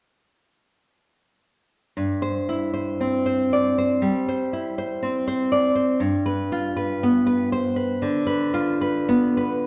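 Sunny in mood, this brief cut from a longer romantic classical piece features a solo nylon-string guitar, fingerpicked up front with a warm acoustic tone and audible finger squeak, playing with flexible rubato from 2.0 to 9.7 seconds as the harmony moves from C/G to G7, bathed in the wet reverb of a church or concert hall.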